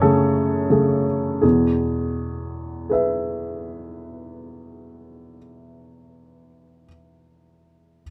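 Set in a gently rubato 3/4 at around 82 BPM, this short excerpt of neoclassical minimalist piano opens by slowing down over its first 1.4 seconds. A lone upright piano carries the passage, its woody, vintage tone sitting up front with a short sustain that keeps each note smooth yet brief. The harmony moves from an F#madd9 chord to a settled E major arrival at 1.4 seconds, where a new section begins and the music rests in its home key. Spanning E2 to E5 and tuned to A4 = 443 Hz, the playing feels tender and peaceful. Close, detailed microphones and a nearly dry room capture the instrument with intimate clarity.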